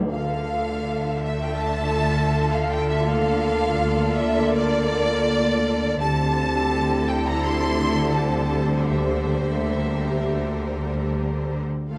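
From the first moment, bowed strings and dark, distant French horns sound together in this bittersweet, sorrowful D minor film-score cue at a rubato 82 BPM. Focused first violins carry the vibrato-rich melody over a smooth second violin line and lush viola accompaniment, while cellos hold D3 and an up-front, woody double bass section anchors D2, all in light reverb as the chords move from Dmadd9 through Bbmaj7/D and Am7/D to C7/D.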